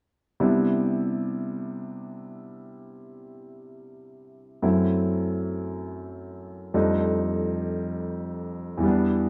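Jazz at a slow 57 BPM in 4/4 with a swung feel, this intimate, tender excerpt cut from a longer piece features a concert grand piano in an up-front accompanying role from 0.4 to 9.3 seconds, its smooth, vintage tone and deep bass moving through Cmaj9, F#m7b5 and F13 in C major, set in a moderate stone-room reverb that gives the sense of a band playing live together.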